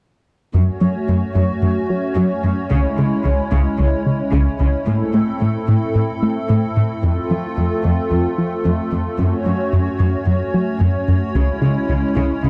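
Cinematic, tense and vast, this cut from a longer piece runs from 0.5 to 12.5 seconds, with a hollow, flute-like pad sustaining chords through chorus over a punchy, wave-folded analog bass riff and a lush, bowed cello section carrying the low line as the harmony moves from F#m through C#m, Am and F, inside a dark production with moderate scoring-stage reverb.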